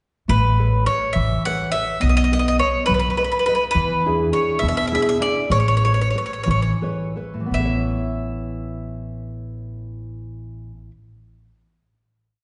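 A bright, picked bowl-back mandolin with doubled strings sits up front singing short song-like phrases in this lively, romantic Italian folk serenade in A major, swaying in 6/8 at 54-70 BPM over a full-bodied, fingerpicked nylon-string guitar's oompah bass notes and chord figures, complete with audible finger squeaks, and a woody pizzicato upright bass marking root and fifth on the main beats, all bathed in a reverberant recital-hall ambience with a softened top end, easing into a slowdown from 3.8 seconds before settling on a final chord at 7.5 seconds.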